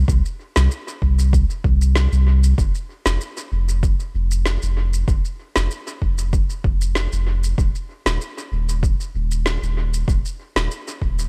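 Earthy and meditative, this organic downtempo excerpt at 96 BPM in a straight 4/4 sets a round, sine-like sub bass with sidechain pumping up front beside a deep, layered electronic kick with small room ambience, while a lighter electronic shaker and woody snare carry analog delay in an echo-heavy digital ambience.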